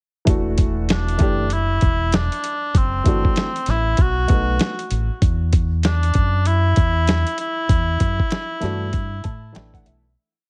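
A woody, slightly detuned upright piano opens this cool, smoky jazz-hop piece at 97 BPM in E minor, comping freely in quartal voicings with a swung 16th feel. It is joined by a muffled, pitched-down sampler-style boom-bap kit up front, with thumpy kick and backbeat snare, and a dark, round dub bass line that is fingered and syncopated. A mellow cor anglais plays a classical-style, motif-based solo melody with tape echo over chords moving from E7sus2 to Em9. The piano returns at 8.6 seconds and adds a short fill at 8.9 seconds as the heavily compressed, radio-like track fades out from 7.7 seconds.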